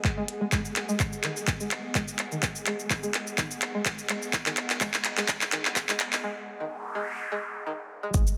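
A twangy, string-like resonator pluck riff with chorus, dub echo and a filter sweep opens this cool, quirky minimal techno piece over a deep, tape-warm electronic kick and an up-front click kit of clicky hats, cabasa and handclaps, with a drum fill running until 6.2 seconds. Behind them sit an ethereal, sidechain-pumped pad in the background and a very quiet, flickering, grainy texture, and during the break that begins at 6.2 seconds an electronic noise sweep enters at 6.6 seconds to close the build-up. At 8.1 seconds a round, nasal analog bass, a mid-forward acoustic hi-hat and dry analog congas arrive briefly in the dense, heavily limited mix, set in a moderate plate reverb.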